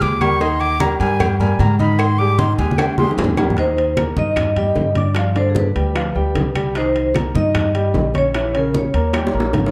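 A thumpy, gut-strung upright bass sits up front in this sophisticated, sunny Afro-Cuban jazz excerpt, its pizzicato notes woody and dark beneath the groove. A breathy concert flute opens with a soft-attack, straight-toned solo line that stops at 3.1 seconds, supported throughout by a natural-sounding grand piano. The percussion bed layers low-tuned, thick-skinned congas played with soft hands, round and distant cowbell and bongos, ringing metal-shelled timbales with agogo bells, and very quiet, woody claves. A percussion fill from 2.6 seconds leads into the vibraphone's entrance at 3.6 seconds, where its metallic, ringing tone and fast motor vibrato carry the melody over harmonies that move from Eb6 through Cm7 and Bbdim to Eb7. Light reverb gives the whole a dark, warm production.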